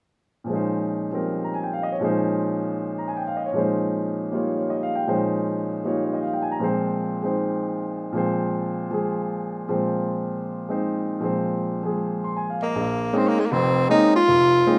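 Swinging eighths at 157 BPM in 4/4 drive this searching, intense jazz fragment in Bb dorian, where a warm, long-sustaining baby grand piano accompanies up front over Bbm11 and Fm/Bb from 0.4 seconds to the end, joined at 12.6 seconds by a breathy, scooped, close-miked tenor saxophone solo up front, all set in a wet club reverb.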